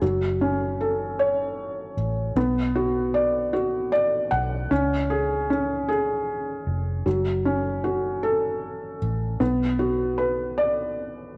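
Aching and dramatic, this six-eight pop ballad moves slowly at 51 BPM in F# minor, its straight feel set in 6/8. A felt-muted upright piano sits up front, soft and intimate, its thin felt giving short, mellow notes with audible action noise and a cassette tape colour across the accompaniment. Beneath it, a vintage muted fingered electric bass supplies a dark, round, foam-muted low end, set quieter than the piano. The harmony moves from F#m to Bm and C# before returning to F#m and Bm, and the piano adds a brief fill at 3.5 seconds. A lush hall reverb with a 2.5-second tail surrounds this home cassette recording, heard as a short excerpt from a longer piece.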